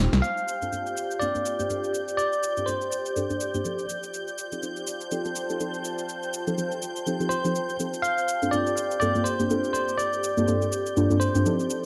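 Deep house with a late-night, hypnotic mood and a swung groove, cut from a longer piece. Deep, mellow chord stabs with a soft, detuned, wave-folded tone, chorus and analog delay sit up front under a filter sweep, moving from Gm11 to F9 and back, while a silky, string-like analog pad with phaser shimmers high above and an ethereal, airy pad with ensemble chorus and its own reverb fills the middle. A punchy analog drum machine with a tape-tinged snare, hi-hat and cabasa drives the groove after an opening fill, and a bell-like tine electric piano with analog delay plays a clean, direct melody from 0.2 to 3.8 seconds and returns at 7.3 seconds, all set in a wet digital room reverb.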